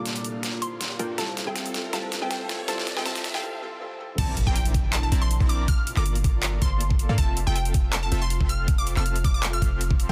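A glassy, crystalline wavetable pluck carries the melody from the first moment, joined by a soft, felt-muted upright piano, a breathy pad sitting in the background, a detuned supersaw stab and a deep, boomy 808-style bass, all pumping against the sidechain in this bright, lush future bass piece at 160 BPM in a half-time feel, in F major. Over the opening 4.2 seconds the section builds as filter sweeps open up the pluck and the supersaw, a layered dubstep kit with a deep snare, bright hats, handclaps and crash plays a fill, and a very quiet riser climbs underneath, with chords moving from Gm9 to Fmaj7. A short break follows before the drop lands at 4.2 seconds, where the intimate, vintage-toned piano drops out, a knocking electronic kick enters up front, and an impact marks the arrival on Bbmaj9#11. Through the drop the punchy, evolving supersaw riff and the overdriven kit drive forward while the mellow sine bass anchors the low end and the chords cycle back through Gm9 and Fmaj7. 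The pluck and piano trail digital delay, the pluck and pad are thickened with chorus, and the sound is dry and dense, with a heavily limited modern finish on this fragment of a longer track.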